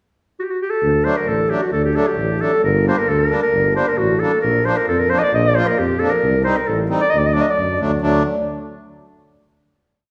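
Klezmer in a soulful, bittersweet mood: a mellow, soft-attacked clarinet opens at 0.4 seconds with an ornamented modal melody up front, a breathy tuba with vibrato and scooped notes joins at 0.8 seconds with root-and-fifth bass on the main beats, and a reedy, close-miked accordion adds off-beat triad chords from 1.0 seconds, the short piece set in a resonant recital hall and closing on a final chord.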